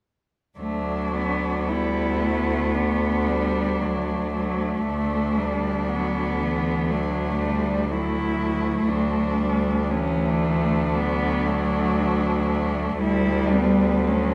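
Serene and tender, this classical excerpt for four bowed cellos unfolds in a rubato 4/4, with all four parts playing together from 0.6 to 14.3 seconds over a single chord. The close melody cello is warm and expressive, with vibrato, a soft attack and portamento. A rich, focused cello with a smooth top carries the second line, a more distant cello with its own expressive portamento supplies the accompaniment, and a clear, up-front cello holds the bass on D2, all set in a moderate recital hall reverb.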